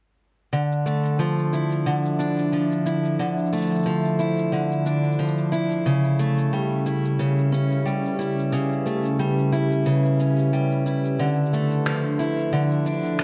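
Delicate and autumnal, this folktronica excerpt moves in a lightly swung 4/4, built on a picked acoustic archtop guitar whose up-front arpeggios carry audible finger squeak and pass through a low-pass filter and delay. From 1.4 seconds a warbling, nostalgic tape-like pad holds sustained chords with a slow attack and long release, its dark square-and-triangle tone thickened by chorus and built-in reverb, while a soft electronic cabasa and finger snaps, both low-pass filtered, tick quietly beneath. The chords shift from Dmadd9 to A7/C# and back, set in light reverb and digital ambience with vinyl crackle and a rolled-off top end.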